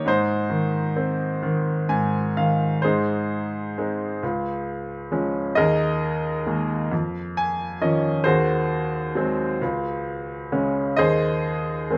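Close, detailed and nearly dry, this calm, peaceful excerpt of lyrical classical solo piano unfolds in Ab major at a rubato 44 BPM in 6/8. Its bright, woody upright piano sits up front with long sustain and a polished tone, adds fills at 1.4 and 6.9 seconds, and moves through Ab and Db harmonies before settling on Ab/Eb at 11.0 seconds.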